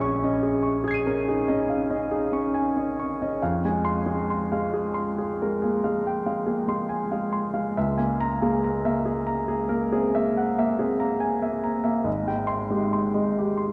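Hazy and serene, this impressionist classical fragment for solo grand piano drifts at 70 BPM in a rubato 5/4, tuned to A4 = 439 Hz. The clear, present piano sits up front with a long sustain, ranging from Ab1 to Eb7 as it moves through Bbm11, Fmadd9, Dbm6 and Abmaj7 over 13.7 seconds. A vast, echoing cathedral reverb with a 7.4-second decay surrounds it.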